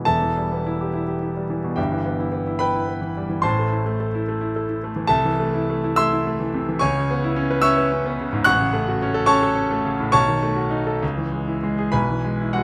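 A clear, intimate grand piano sits up front in light reverb, its natural tone carrying audible action noise from the instrument itself. This short excerpt, cut from a longer piece, is a virtuoso classical piano study in E minor, played solo from 0.0 to 12.6 seconds and spanning a range from E1 to F#6. The metre is 6/8, with the dotted-quarter pulse moving at roughly 64-74 BPM under a flexible rubato feel, and the tuning sits at A4 = 439 Hz. The harmony begins on E minor, moves through A minor and then C#m7 at 6.8 seconds, and passes through B9 and C#m before resting on E/B near 11.9 seconds. The mood is heroic and sparkling throughout.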